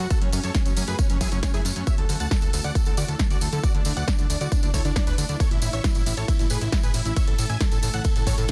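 Driving and emotional, this uplifting trance excerpt at 136 BPM in straight 4/4 sets a huge, euphoric supersaw lead with cassette-tape colour and delay over a mellow, catchy unison pluck line in the background, a dark, ethereal pad with octave-up shimmer entering at 0.1 seconds, a fat, saturated analog bass pumping against an up-front, layered electronic kick, a tape-toned analog drum machine supplying hi-hat, ride and punchy snare, and a jingly acoustic tambourine, all moving through F#m, Dadd9 and A in a dense, heavily limited modern mix.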